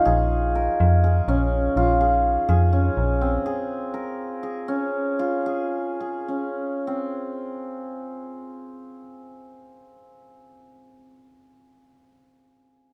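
In a lopsided 7/8 with uneven beats at 246 BPM counted in eighths, this restless, urgent piece of contemporary chamber music sits in B-flat minor and opens on a Bbm9 chord. A shimmering, ringing hammered dulcimer plays arpeggios up front from the start to 10.9 seconds, joined briefly by a metallic, digital FM bass with a fast attack and decaying tones that sounds until 3.4 seconds. The pulse slows from 3.5 to 7.2 seconds, and a moderate recital-hall reverb surrounds this short cut from a longer work.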